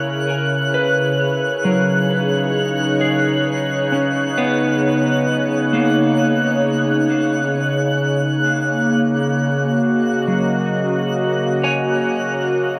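A worn, warbling cassette sound with audible pitch drift wraps this short ambient passage, all set in a huge, wet reverb that lingers for seconds. At a slow 66 BPM in a straight 4/4 and in C# dorian, the mood is reflective and melancholic, moving from C#m7 to D#m/C# at 7.1 seconds. Up front, an evolving wavetable pad holds sustained chords, its detuned, full-bodied tone morphing under chorus and its own reverb. A clean, picked electric guitar plays arpeggios alongside it, coloured by subtle chorus, a diffuse ambient delay and shimmer reverb. High above, a twinkling granular texture on F#6 adds a sparkling, octave-up glint with slow attacks and long releases. All three parts sound together from the start of the excerpt to its cut at 12.8 seconds, forming one continuous wash.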